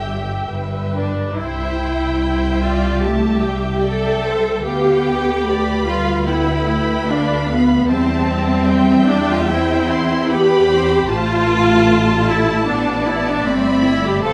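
Classical slow romantic movement for string orchestra, serene and lyrical, unfolding with a rubato feel in a wet recital hall reverb and cut from a longer piece. The violins carry a smooth, distant vibrato melody high above a soft-attacked, expressive second violin line, while an intense, up-front viola section supplies lush accompaniment. Beneath them, a focused, close cello section and a clear double bass section share the bass as the harmony moves from G to C at 1.4 seconds and reaches Am7 at 11.1 seconds.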